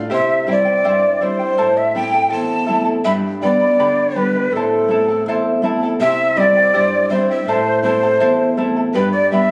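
Captured on a phone in a concert hall, this recording carries a moderate hall reverb topped with added studio reverb and compression, giving the sound a roomy, slightly squeezed quality. It is a melancholic, earthy piece of Andean folk in 2/4 with a straight feel, and the clip is cut from a longer performance. A fingerpicked nylon-string guitar sits up front with fresh, classical tone, while a charango's double strings, some doubled at the octave, add a shimmering layer of fingerpicked accompaniment. From 0.1 seconds a cane quena carries the melody close to the listener, breathy and end-blown with vibrato, tongued notes, audible chiff, lifted highs and a slightly unsteady pitch. At 6.0 seconds a second quena enters in the background with a distant second line and a crisp attack, as the chords cycle through C, Am and G.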